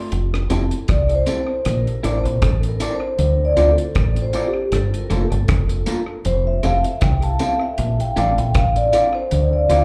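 Heard through a live venue's PA, the recording has a moderate club reverb that sets the band in a small, intimate room. This tender, smooth lovers rock reggae piece moves at a relaxed 78 BPM in 4/4 with a light swing on the sixteenths, cycling in F major through Fmaj7, Bbmaj9#11, Dm7 and Gm9. At 0.1 seconds a round, foam-muted fingered electric bass sits up front with a dry drum kit whose tight kick, hi-hat and rim click carry a rolled-off top and a touch of tape echo. From 0.5 seconds a mellow, clean tine electric piano murmurs in the background, a slightly broken-up, compressed electric guitar adds picked stabs through a small old amp, and a vintage, band-limited tambourine joins faintly. At 0.9 seconds the vibraphone takes the solo melody with soft mallets, its metallic, ringing tone shimmering with slow motor vibrato in a boxy small-room sound, colored by tape echo, plate reverb and slapback echo.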